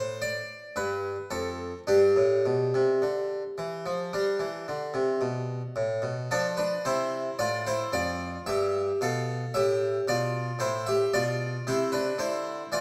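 A solo harpsichord, plucked and full in the Flemish style with two sets of strings sounding up front, opens this short cut from a baroque-style suite movement, moving through a radiant, dance-like passage at a rubato 56 BPM in 4/4, tuned to A4 = 444 Hz, spanning F2 to F5 over chords from Dm through G to Am, and shifting into a second section at 6.3 seconds within a moderate recital hall reverb.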